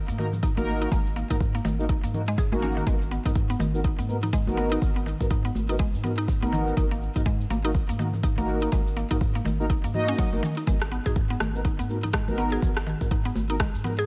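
Soaked in light reverb with a tape-warm, small-room character on the drums, this hypnotic, spiritual afro house excerpt swings gently over a round, deep analog bass that pumps against an up-front electronic kick. A woody, mallet-like synth pluck plays arpeggios through chorus and tape echo, while mellow synth brass stabs, brassy and detuned with an evolving filter sweep, float over chords moving between D#m/G# and G#m7. Electronic cabasa and rim click sit alongside bright congas played with soft hands in the background, all running from the opening second to the cut at about 14 seconds.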